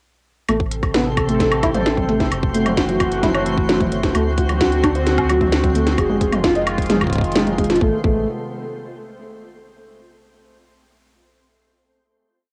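Cerebral and eerie, this short IDM piece moves at 131 BPM in A melodic minor through Am, F#m7, D7 and Fm7, with a felt-muted upright piano cycling a 14-step arpeggio that drifts against the bar, its soft action noise audible over a warbling, detuned tape-like pad and a round, deep analog bass holding the roots. An up-front, overdriven kit of woody snare, smooth closed hats, low tom and high woodblock keeps shifting in a glitched, ever-changing beat beside a tight, broken electronic kick, while a faint twinkling granular shimmer holds a high note in the background. The homespun cassette recording sits in a small room, and the groove gives way at 7.8 seconds to a final held chord that rings out until 9.6 seconds.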